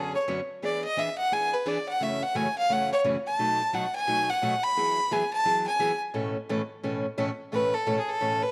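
Playful and swinging, this brisk country cut at 174 BPM in A major opens straight into a fiddle solo that runs to 7.5 seconds, its bowed line biting and intense, with an airy bow and light vibrato, sitting close and up front. Beneath it, a bright picked steel-string acoustic guitar supplies the accompaniment, also up front, moving through chords such as E7, F#m7 and B7 before settling on Aadd9. A moderate echo-chamber reverb lends the short fragment a studio sheen.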